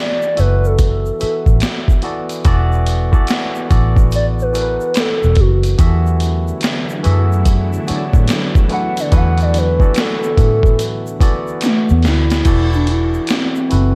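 A smooth, gliding portamento synth lead with chorus and slapback echo carries an introspective, sultry neo-soul groove over a barky, lightly overdriven tine electric piano, a round, foam-muted fingered bass, a gritty, pitched-down boom bap kit, and a close, dry egg shaker and finger snaps, while a lush string machine pad glows in the background from 5.8 to 12.4 seconds and a drum fill lands at 11.6 seconds.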